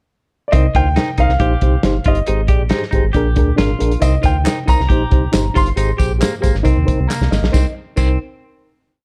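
Uptempo 1960s-style soul in C minor at 137 BPM, driving and passionate, where a natural baby grand piano states hook phrases above a reedy electric piano pulsing eighth-note chords with fast tremolo and a clean, compressed semi-hollow guitar repeating its figure. A round, deep analog bass plays a syncopated line with slides under a dry soul kit with dark cymbals and a tight kick holding a backbeat groove, while tambourine and group handclaps join on the backbeat at 4.0 seconds. After a drum fill at 7.1 seconds the short piece lands on a final chord, all in a dark, small-room production.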